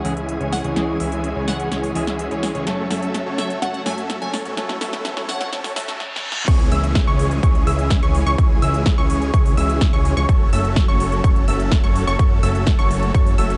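This festival progressive house excerpt runs at 126 BPM in C# minor, euphoric and emotional, moving between C#m and F#m as a build-up gives way to a drop at 6.5 seconds. A huge, detuned supersaw lead carries the riff throughout, bright and compressed, with sidechain pumping, a low-pass filter sweep during the build and dub echo, while a fat, thick analog bass pumps underneath. The overdriven dance kit brings a punchy snare, crisp hats and crash cymbal, with a drum fill driving the build, and a very quiet, distant symphonic string section holds lush, bowed chords with vibrato. Early on, a glassy, crystalline wavetable pluck with chorus and echo plays a short high melody, and a clean, dark semi-hollow electric guitar sits in the background with pumping and dub echo until 5.7 seconds. Faint risers, a reverse cymbal and a downlifter sweep through the transition, and at the drop an up-front, overdriven electronic kick arrives alongside a lush, detuned unison pluck playing high arpeggios. 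The dark production keeps a light digital ambience and trims the top end.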